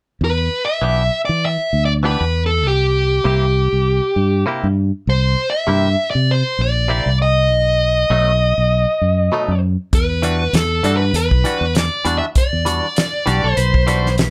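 Opening on a dark, overdriven lead guitar melody over up-front fingered bass and twangy, phased clean guitar stabs, this smoky, soulful straight-eighth soul blues excerpt moves from Em7 through C7 and B7 before a tight, gritty soul drum kit with a fat snare enters at 9.9 seconds on Em9, and a compressed slide guitar adds a brief second line from 13.3 seconds, all in light reverb.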